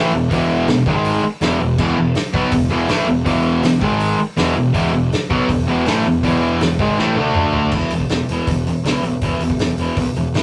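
Punk rock at 161 BPM in a straight 4/4, this upbeat, energetic excerpt in E major is cut from a longer piece and moves mostly between power chords on E and G#, touching D before landing back on E. A crunchy overdriven guitar sits up front with a bright, picked riff, while two distorted electric guitars, one compressed and one double-tracked, play riffs behind it. A fuzz-driven picked bass growls underneath, and a loose indie drum kit with a fat snare, punchy kick and rolled-off top comes in at 0.3 seconds, using crash, hi-hat and toms. A drum fill runs from 7.0 to 7.7 seconds, after which the crunchy guitar and the double-tracked distorted guitar stop, leaving the compressed guitar, bass and drums to carry the final stretch to 10.4 seconds. The sound is a rough rehearsal-room recording with tube saturation and a moderate booth ambience.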